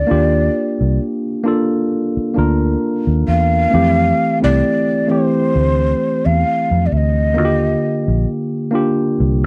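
R&B at a slow 66 BPM with a gentle 16th-note swing, this sensual excerpt drifts between Ebmaj9 and Fmaj9. A breathy, hollow shakuhachi carries the melody with vibrato and a chiff until 8.3 seconds, over a worn, slightly out-of-tune tine electric piano heard through a combo amp. A dark, round, foam-muted fingered electric bass sits up front in a dry, close 1970s-style studio sound with light reverb.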